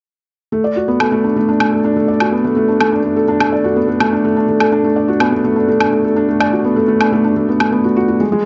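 Melancholic and moving, this short excerpt of piano and strings electronica in straight 4/4 sets a soft, intimate felt-muted upright piano riff, placed up front with digital delay, from 0.5 to 8.5 seconds against a layered, overdriven electronic woodblock re-recorded in a large room, all within light reverb and a dark studio ambience.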